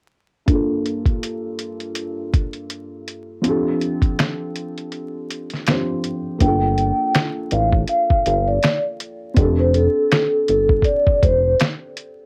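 A muted, boxy felt upright piano with audible action noise and a filter sweep opens this hazy, reflective lo-fi hip hop excerpt alongside a muffled, pitched-down sampler-style drum kit of thumpy kick, snare, hi-hat and finger snaps, both given a cassette-tape tint amid vinyl crackle and light reverb, and after a break at 4.9 seconds a fat, nasal analog bass and a metallic, ringing soft-mallet vibraphone with fast motor vibrato enter at 6.4 seconds, the vibraphone carrying the melody over two alternating chords.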